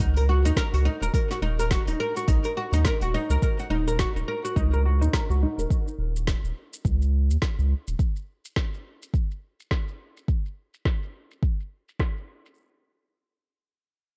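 Meditative organic downtempo fragment with a gentle 16th-note swing, where a bright, woody, plectrum-plucked oud plays arpeggios through a low-pass filter and tape echo until 5.7 seconds, a round analog bass with a sine-like, sustained tone sits up front until 7.9 seconds, and a deep electronic kick joins at 0.6 seconds in front of a dry, dark deep house kit of smooth hi-hats, shaker and woody snare that carries a filter sweep from 3.4 seconds.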